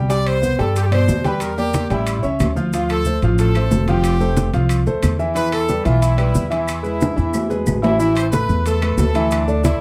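A driving 182 BPM salsa groove in A minor carries this passionate, fiery excerpt, with a thumpy, gut-strung upright bass and a clear, intimate grand piano up front, a brilliant, punchy horn section on the melody, ringing timbales, soft-handed congas and woody claves sitting in the background, grainy maracas, a drum fill from 7.0 to 8.0 seconds, and a moderate studio ambience.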